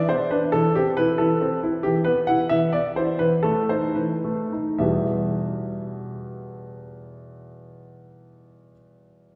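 A clear concert grand piano carries this short excerpt alone, its smooth, vintage tone sitting up front with a deep bass and short sustain, spanning E2 to F#5. The music is a classical-period sonatina in E minor and 6/8, moving in dotted quarters at 69-93 BPM with a rubato feel that gives it an elegant yet dramatic character. The opening section slows down from 1.2 to 4.8 seconds as the harmony moves from E5 through Am/E and back to E5, then to B7/E. A second section begins at 4.8 seconds, arriving on E minor. The piano sits in a wet church reverb with a long decay, lending the brief passage a spacious, resonant setting.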